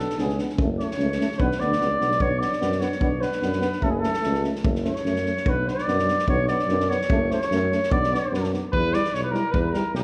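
A warm flugelhorn leads this fiery, virtuosic Balkan brass band fragment, playing solo up front in B minor from the opening until 8.7 seconds. The tempo is a brisk 147 BPM in 2/4 with a light swing on the sixteenths, and the harmony moves between Bm and F#m before turning to Em as a new section begins. Beneath the solo, a dark, close-miked euphonium and a distant, roomy trombone, both with light vibrato, hold the accompaniment in the background, while a mellow tuba carries the bass. An acoustic drum kit with a punchy kick and a medium-tuned snare, played with bundle sticks, keeps time with a rolled-off top. At 8.7 seconds a vintage-toned cornet takes the melody up front, and the band sits in a wet recital hall reverb, heard from further back in the room.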